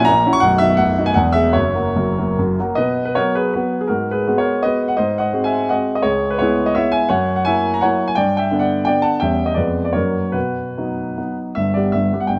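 Dotted rhythms in a lilting 3/4 drive this romantic classical dance, its tempo flexing with rubato between 139 and 183 BPM. A solo concert grand piano carries the whole piece in B major, sounding clear, open and up front, with a deep bass reaching down to B0 and a range extending as high as C#6. The opening phrase settles on B, E and F# before a new section begins at 2.8 seconds and moves through richer chords such as G#m7, C#m7 and F#7, then a darker turn through a diminished chord before returning home to B at 10.3 seconds. The mood is graceful and proud, like a stately ballroom waltz. Close, detailed microphones capture the instrument in a recital hall ambience with a moderate 1.6-second reverb, and the passage is cut from a longer piece, ending on a G chord at 11.6 seconds.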